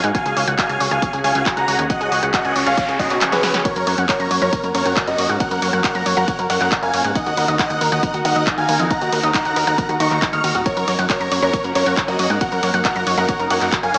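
Driving straight 4/4 at 137 BPM, this euphoric, soaring uplifting trance excerpt in F# major pumps throughout, with a punchy analog drum machine's handclaps, hi-hat, ride cymbal and snare joined by a layered, tape-warmed electronic kick that runs from 0.1 to 13.8 seconds. A plucky analog bass with a fast-attack, decaying filter pluck anchors the low end, while a round, detuned analog pluck spins arpeggios through chorus and analog delay. The huge, bright supersaw lead carries the melody, its detuned unison voices compressed and colored by cassette tape and a diffuse ambient delay, as a worn, intimate concert grand piano traces a second line in the background with audible action noise and short sustain. Beneath them a silky, string-like analog pad holds sustained chords with slow attack, vibrato and ensemble chorus, moving from C#sus4 through F# and D#m back to F#. A background noise sweep runs from 2.2 to 3.6 seconds, overlapped by a drum fill from 3.2 seconds, and the whole dreamy mix is soaked in plate reverb with a small-speaker character.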